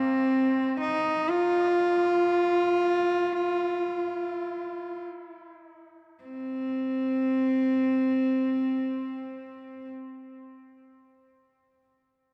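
A lone bowed cello plays sul tasto up front with a soft attack and a nasal, floating tone, carrying a heartbroken, melancholic folk melody between C4 and F4 in C minor and free time, slowing down through the opening 6.2 seconds before a new section begins and the cello falls silent at 9.9 seconds, its dub echo blooming into a moderate spring reverb across an echo-heavy cassette-tape mix in this passage cut from a longer piece.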